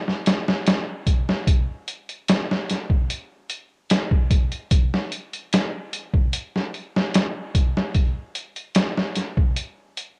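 The recording has the worn, warbling character of old cassette tape, with a warbly pitch drift and a light reverb over it. This is a melancholic, dark trip hop fragment in a straight 4/4, cut from a longer piece. A sampler-style drum kit carries it alone from 0.1 seconds, playing kick, snare and hi-hat up front in the mix. The kit sounds compressed and pitched down, with a thumpy kick, a medium-tuned snare and the grit of a vintage 12-bit sampler. Re-recorded in a small room, the drums take on a tape-warm quality that deepens the gloomy, dusty atmosphere.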